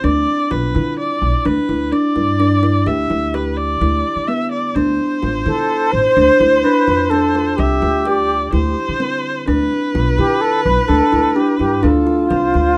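A rich, focused bowed viola sings a second line over a soft, woody kalimba ringing out arpeggios and a pizzicato upright bass, setting a hypnotic, restless chamber piece in 5/4 at 127 BPM, cut from a longer work, with chords moving between Em7 and Dm11. At 5.5 seconds a breathy, mellow concert flute takes the melody up front with expressive vibrato and a crisp attack. Light reverb gives the small ensemble a gentle sense of space.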